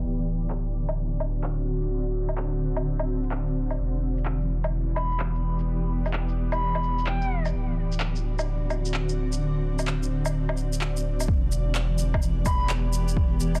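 A blurred, evolving granular cloud pad pulses with sidechain pumping through sustained D7 and Em7 chords in this wistful, ghostly future garage fragment at 128 BPM with a swung sixteenth feel in E minor, resting on a round, dark sine sub bass and overdriven electronic shaker, handclaps and woodblock, while an airy, distant silver concert flute with vibrato and analog delay enters at 5.0 seconds, and a filter sweep runs until an overdriven deep electronic kick drum arrives at 11.3 seconds, the whole mix carrying a dense, heavily limited, low-pass-filtered cassette-tape master.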